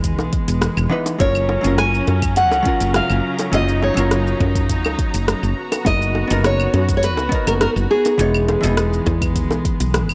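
Dry and gritty, with a cassette-tape grain, light reverb and a small-room ambience, this sunset chillout excerpt in F# major moves at 103 BPM in a straight 4/4 with a blissful mood. A deep electronic kick and a produced deep house kit with metallic hi-hats, claves, rim clicks and shaker run until the kick drops out at 9.8 seconds, while tight, high-tuned bongos played with hard hands join at 0.2 seconds. Underneath, a growly, round fretless electric bass sits up front, and a dark, clean hollow-body jazz guitar with tape echo plays the accompaniment. A clear studio string section holds sustained bowed chords with light vibrato and a biting, earthy edge. From 1.2 seconds a fingerpicked nylon-string guitar with fresh strings carries the melody, also through tape echo, over chords that move from Emaj7 to F#maj7, then Bmaj7/F#, and back to Emaj7.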